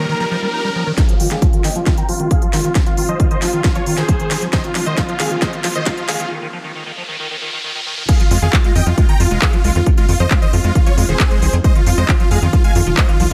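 Driving and bittersweet, this uplifting trance clip opens on a huge, detuned supersaw melody over a shimmering, ethereal pad and a squelchy, resonant acid bass arpeggio, all pumping against the beat as a riser climbs in the background. The heavy electronic kick and a techno kit with a cracking snare, smooth hats, handclaps and crash arrive at 1.0 seconds, driving a build-up with filter sweeps on the supersaw and acid bass, a drum fill and a short break. At 8.1 seconds the drop lands, and a tight, punchy sequencer bass enters at 8.3 seconds beneath the thick, compressed lead with its dub echo.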